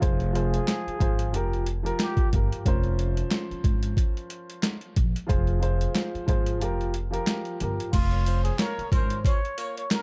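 Gritty and moody, this boom-bap hip-hop cut moves at 91 BPM with a swung 16th-note feel, taken from a longer piece. An up-front, sampler-style drum kit drives it with a thumpy kick, medium-tuned snare, hi-hat, handclaps and crash, overdriven and re-recorded in a small room, while a woody pizzicato upright bass on gut strings holds down the low end. A dark, mellow upright piano with long sustain comps through minor chords centred on F minor until 7.9 seconds, with a break just before. A breathy, whispered trumpet with a plunger mute brings intimate wah-wah phrases and light vibrato at the start and again from 7.9 seconds, touched by analog delay. In the closing stretch, faint jingly sleigh bells appear and a mellow saxophone section adds vibrato-laden jazz stabs from 8.1 seconds, all wrapped in a dark studio ambience.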